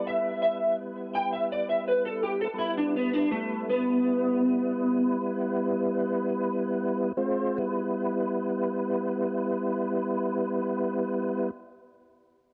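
The rhythm moves in a slow, straight 12/8 sway, with the pulse easing back between 1.1 and 7.2 seconds. This soulful, brooding blues passage is cut from a longer piece. An electric guitar through a small old amp carries the melody up front, its picked tone dark, slightly broken-up, compressed and lo-fi, colored by an ensemble chorus and cassette tape, and it plays until 5.1 seconds. A tonewheel organ, also up front, holds sustained chords with a clear, clean sound, audible key click, a slow rotary speaker, chorus vibrato and the same cassette tape coloring, and it continues alone until 11.5 seconds. Light reverb and digital ambience give this home cassette recording a modest sense of space.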